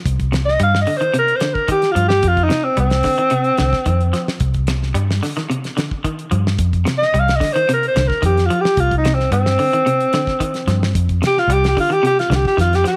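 Set in a small, intimate room, this afrobeat passage, cut from a longer piece, has a defiant, hypnotic pull at 110 BPM in a straight 4/4, resting on a single Cmadd9 chord in C minor. A damped 70s drum kit sounds dry, airy and polished, with a fat snare, a tight kick and hi-hat. A vintage muted fingered electric bass sits up front from 0.1 seconds, dark, round and amped, with a foam-muted thump in its low register. An electric guitar at the edge of break-up picks twangy arpeggios in a mid-low range from 0.3 seconds, slightly gritty and bathed in spring reverb. Entering at 0.5 seconds, a warm alto saxophone carries a pop-style solo with vibrato, sitting up front yet sounding roomy and distant as it ranges from C4 to F5.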